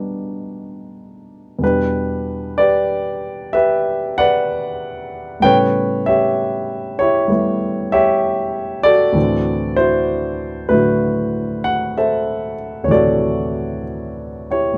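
A warm, up-front grand piano with short sustain plays alone across this sophisticated, swinging solo jazz fragment at a relaxed 63 BPM in 4/4, its swung eighths loosened by rubato as it moves through B7alt, Em7 and A9 to a closing D13 in D mixolydian over about 14.8 seconds, set in moderate studio ambience.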